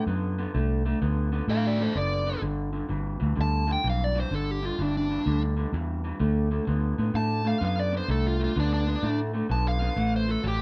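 A swung shuffle in 4/4 at 127 BPM rolls along with a laid-back, soulful feel in this short electric blues clip in D mixolydian. A dark, smooth lead guitar with overdrive takes a picked solo from the very start to the end, singing between D4 and A5. Beneath it, a second electric guitar runs through a small old amp, playing a fingered riff in its low register with a slightly broken-up, lo-fi, compressed tone. A vintage electric bass enters at 0.1 s, foam-muted and fingered, giving a round, punchy bottom. The chords move from D7 through G, G5 and D5 before landing on A7 at 10.0 s, and the band sounds as if playing live together in one room, with moderate studio reverb and all three parts up front.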